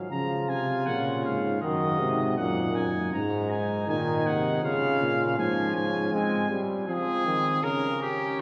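Heard from further back in a wet cathedral reverb, this short excerpt of an imitative classical canzona for brass ensemble moves at 80 BPM in Db major with a driving yet contemplative mood, as a clear, vibrato-tinged trumpet carries the melody up front, a mellow flugelhorn sings a smooth second line in the background, a bright, punchy trombone accompanies, and a dark, soft-attacked euphonium holds the bass until 6.1 seconds.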